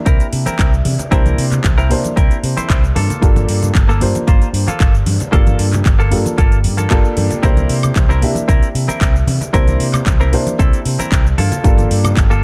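Nu-disco at 114 BPM with a cosmic, sleek mood, this short excerpt sets a punchy electronic kick and a house kit of cabasa, handclaps, metallic hi-hat and woodblock under a fingered electric bass with a bright envelope filter and sidechain pumping, while a twangy, clean, direct-recorded guitar riff with lush chorus and digital delay plays alongside a dark, worn grand piano whose audible action noise, pumping and delay add intimacy, congas with hard hands sound distant from a large room from 0.5 seconds, and the dark production with little reverb moves between C7 and Gm9.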